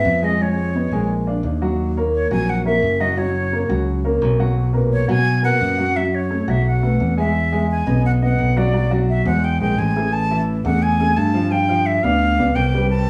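A growly, punchy fingered electric bass sits up front in this sunny, sophisticated Afro-Cuban jazz excerpt at 173 BPM in B major, joined by a breathy, tongued concert flute carrying a slightly unsteady melody and a warm, natural baby grand piano in accompaniment, with the band playing live in one room under a wet studio reverb as the harmony moves from Fm7b5 and A#7 toward Emaj9 at 7.3 seconds and closes on G7.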